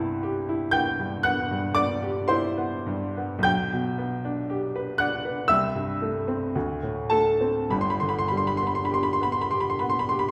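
Classical romantic nocturne for solo piano, dreamy and nostalgic, unfolding slowly in 4/4 with a free, rubato feel in this short fragment of a longer piece. A clear, natural-toned baby grand with short sustain sits up front, ranging from G1 to A6 as it moves from Cmaj7 through G/B, Am7/C and Dsus2 to settle on G at 7.7 seconds. A wet recital hall reverb lends the sound a sense of being heard from further back in the room.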